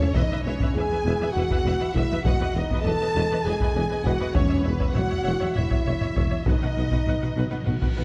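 A dark, warm production sits in a moderate concert hall reverb as this heroic, triumphant excerpt of an epic orchestral film score drives along at 200 BPM in 7/8, moving from E through B/E and C#m/E to B. Two lush, vibrato-rich violin lines carry the melody and a second line over a smooth viola section, while a mellow French horn section holds sustained chords and a background bass of cello, focused but distant double basses and a close-miked tuba anchors the low end beneath hard-stick taiko drums. Very quiet, articulate timpani join at 4.4 seconds with a fill from 6.5 seconds, and a huge, bright reverse cymbal comes in at 7.6 seconds.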